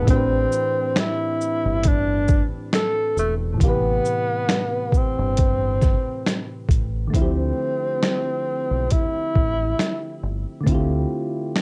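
A breathy, whispered tenor saxophone opens this melancholic, hazy lo-fi hip hop excerpt, playing an intimate jazz-style solo with vibrato, subtone and scooped notes, dulled by a low-pass filter and tape and set in plate reverb, over soft, detuned electric-piano-like synth keys softened by chorus and tape. A dark, round fingered dub bass and an up-front, gritty boom bap kit join almost at once, the kit compressed and pitched down with a thumpy kick, snare, hi-hat, shaker and finger snaps, all swung lightly as the chords move from Am11 through Am9 to Dm11. The saxophone drops out at 10.2 seconds, and the bass stops at 11.0 seconds, leaving keys and drums to carry the cassette-recorded home sound to 11.6 seconds.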